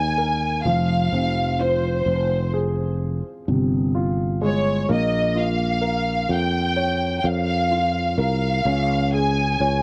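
A straight 4/4 pulse at 64 BPM carries this tender, emotional pop fragment, where a lush, biting string ensemble sings the bowed, vibrato-laden melody up front over a short-sustain grand piano and a growly, bright fretless electric bass, moving from Absus2 through Fm and Bbm to Db across 9.8 seconds in moderate booth ambience captured on home cassette.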